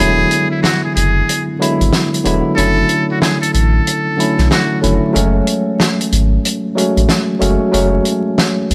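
Moody and dark, this short boom-bap hip-hop excerpt sits at 93 BPM with a swung 16th-note feel, as a buzzy, breathy trumpet with metal mute sings a jazz-style solo line full of vibrato and scooped notes until 4.8 seconds. Underneath, a worn, slightly out-of-tune tine electric piano with light overdrive moves through E7, Dmaj7/F#, and F#madd9, alongside a deep, round sine sub bass and a dry, fat-snared soul drum kit with a rolled-off top that enters at 0.3 seconds. A small room reverb and vinyl crackle give the whole thing a dusty, intimate sound.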